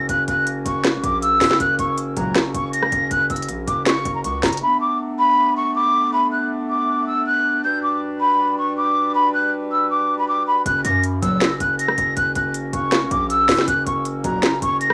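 Hip hop in a half-time trap feel, this dark and eerie cut from a longer piece is led by a breathy jazz flute up front, its metallic tone carrying vibrato and lifted highs while a low-pass filter, cassette tape grit and analog delay shade the expressive, soft-attacked melody. Beneath it, a clear woodwind section holds sustained chords in a tight, classical style with light vibrato, also tinted by cassette tape. A distorted 808-style bass adds a heavy, saturated low end with a noise layer and fast, decaying notes, while an electronic trap drum kit, sitting forward in the mix, brings a sharp snare, crisp hi-hats and rim clicks. Both bass and drums drop out at 4.6 s, leaving flute and woodwinds over the Bm7 and Gmaj7 chords, then return at 10.7 s as the harmony lands back on F#. A chorused polysynth punctuates with brief, glossy retro stabs of pulse and sawtooth tone, first heard at 2.2 s, all within a light reverb and the small-room ambience of a home cassette recording.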